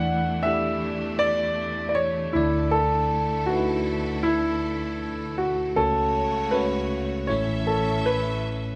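Hopeful and emotional, this 79 BPM pop excerpt in D major sets a warm baby grand piano melody with long sustain up front over a bright, bell-like tine electric piano accompaniment and a lush, bowed string section holding smooth sustained chords with vibrato, all playing together live in one room with a moderate large-studio reverb as the harmony moves from Asus4/E through Dsus2 and F#m/C# to A.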